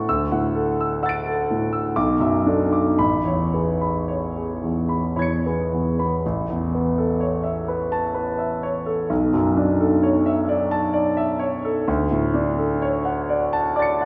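A slow, rubato three-beat pulse drifts between 54 and 66 BPM, giving this short piece of impressionist solo piano a free, unhurried sway. The mood is serene and dreamy, rooted in A major with tuning set to A4 = 441 Hz. A concert grand plays alone from 0.0 to 14.1 seconds, ranging from A1 up to D7, its tone clear and open with a deep bass. Lush extended harmonies colour the progression, moving from Dadd9 through Bm7 to Amaj9 before a restated phrase begins at 6.2 seconds and passes through Aadd9, Bm11 and Dmaj7. The piano sits up front in the mix, yet the listener seems placed further back in a recital hall whose wet reverb, with a 1.7-second decay, lends a soft haze to every sustained chord. This fragment is cut from a longer work.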